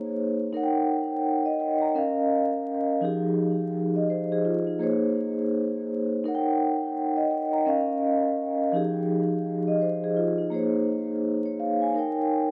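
Hip hop at 84 BPM with a swung 16th-note feel, this dark, moody fragment from a longer piece features a solo vibraphone played with soft mallets, its metallic, ringing, mid-forward tone up front and colored by slow motor vibrato, cassette tape processing, filtering and dub echo, moving through Bbm9, Eb7, Db69 and Fm9 chords in an echo-heavy mix with moderate spring reverb and a dusting of vinyl crackle, before a brief new section arrives at 10.5 seconds.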